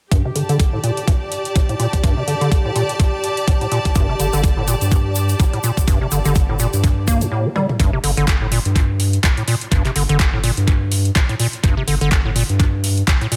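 A swung sixteenth-note groove at 125 BPM in 4/4 drives this gritty, hypnotic acid house cut in G minor, taken from a longer piece. An overdriven, thumpy kick sits up front, with an analog drum machine supplying handclaps, toms and metallic hats that carry a tape-warm tint and a trail of tape echo. The squelchy, hollow square-wave acid bass riff runs through a resonant filter sweep, its plucky, decaying notes pushed through overdrive, analog delay and sidechain pumping. A clear, smooth symphonic string section holds a bowed, lightly vibrating texture above, pumping under sidechain compression, while at 4.0 seconds a deep, thick, saturated sub bass and a grainy, bright egg shaker join in. The strings and shaker drop out at 7.3 seconds for a short break, a drum fill lands at 7.6 seconds, and the second section rolls on with bass and drums in an echo-heavy mix of light digital ambience.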